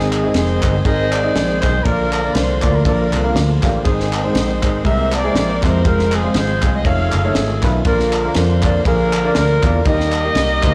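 A tube-saturated fingered electric bass, dark, round and up front, drives this jubilant, uplifting uptempo gospel excerpt at 120 BPM with a swung feel, joined by a pop-style saxophone section carrying the melody with light vibrato, a woody upright piano with audible action noise, a reedy tonewheel organ with key click, fast rotary speaker and chorus vibrato holding chords in the background, a tight funk drum kit with a high-tuned snare and bright cymbals, and crisp group handclaps from 0.1 seconds, all in a small room with light reverb and a blown-out, overdriven sound.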